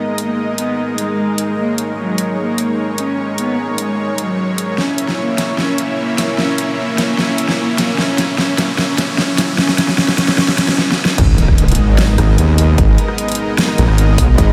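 A half-time 4/4 pulse at 150 BPM drives this aggressive, chaotic heavy wobble dubstep passage in G# minor, cut from a longer piece, where a dark, woody bowed cello with vibrato and analog delay carries the melody over a lush, airy supersaw pad pumping with sidechain, while an overdriven dubstep drum kit with a huge snare, crash, hi-hat and rim click builds through fills and a background riser. At 11.2 seconds the drop hits with an impact, a punchy overdriven electronic kick, and an up-front saturated sawtooth wobble bass with chorus, joined at 11.4 seconds by a metallic, distorted FM wobble bass. Everything sits in a dreamy mix soaked in a huge ambient reverb.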